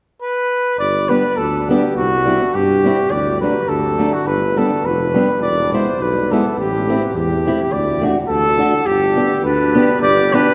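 Jolly and festive, this brief alpine folk dance-band excerpt in G major moves at 104 BPM in a lightly swung, rubato 2/4, with a warm trumpet carrying the melody up front over a mellow tuba bass and a dark, woody, boxy fingerpicked ladder-braced acoustic guitar, while a bright, vintage clarinet slips in behind as a second line at 9.4 seconds, all bathed in the long, wet reverb of a cathedral-like hall.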